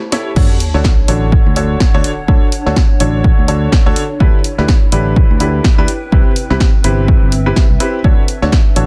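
Piano house at 125 BPM in D major, this short excerpt cut from a longer piece feels uplifting and euphoric, with a swung sixteenth-note lilt. A brief break opens the clip, with a drum fill at 0.1 seconds before the drop lands at 0.4 seconds, marked by a very quiet electronic sub drop that lasts until 2.3 seconds. A clear, worn baby grand piano carries the riff, its intimate, present tone and audible action noise given short sustain, dub echo and sidechain pumping, moving through Dmaj7, G6 and Cmaj7 chords. Underneath, a dark, round fingered electric bass pumps with the sidechain, while an up-front, tape-warm electronic kick drives the groove alongside a punchy analog drum machine supplying snare, hi-hat and crash. In the background, a warbling, nostalgic lo-fi pad built from detuned square and triangle tones with a sub octave swells in slowly through chorus and its own reverb, breathing with the sidechain. 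The mix is dry and dense, with a heavily limited modern master.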